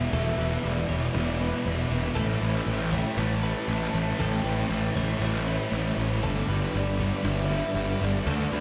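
A mellow, horn-like synth lead with a round, warbling vintage tone sings through this blissful, wistful shoegaze and dream pop excerpt, its soft-attack sustained notes carrying the melody through chorus, phaser, vibrato and a diffuse ambient delay. From the first moment, three guitars stack their riffs in the background: a biting overdriven guitar trailed by reverse reverb, a sludgy double-tracked distorted guitar, and a dark, thick fuzz guitar. Up front, a bright fuzz-laden electric bass drives the low end at a steady 118 BPM in a straight 4/4. A twangy, compressed twelve-string electric guitar adds chiming arpeggios from 0.1 seconds, joined by a very quiet, woody cajon with faint snares and, from 0.3 seconds, a jingly, close and dry tambourine. The harmony moves from Em7 to A7 and settles on Gadd9, all washed in a dreamy cathedral reverb that soaks the mix.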